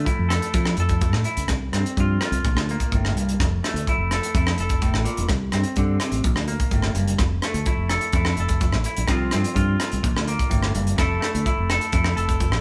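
A live band fills a moderate stone room, giving this excerpt from a longer highlife guitar piece a joyful, carefree air at 126 BPM in a straight 4/4, in F major. A bright, twangy clean electric guitar sits up front with picked chords cycling through Fmaj7, Csus4 and Bb. Beneath it, a warm, direct fingered electric bass and a tight funk drum kit, mid-forward with a tight kick, hi-hat and rim click, keep the groove bouncing for the full 12.6 seconds.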